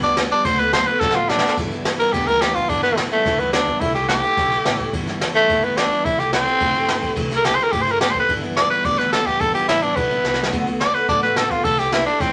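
Retro and rollicking, this straight-feel rockabilly cut in G major races along at 214 BPM, led by an up-front, raspy, growling tenor saxophone with vibrato and a smooth top that solos through the opening 1.6 seconds, while a full-bodied, picked steel-string dreadnought adds bright accompaniment, a woody, thumpy pizzicato upright bass sits in the background, and a roomy brushed drum kit with dark cymbals and a boomy kick adds fills at 1.0 and 10.2 seconds, all set in moderate studio reverb.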